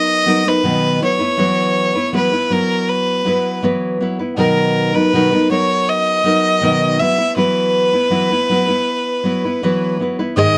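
A bowed violin with a rich, slightly nasal tone and light vibrato carries the melody from the first moment, alongside a full-bodied, fingerpicked nylon-string guitar, both sitting up front. This heartfelt, easy-going acoustic pop excerpt moves at 80 BPM in a straight 4/4, alternating between Bmaj7 and Esus2. Light reverb gives the earthy bowing and deep classical guitar a gentle sense of space.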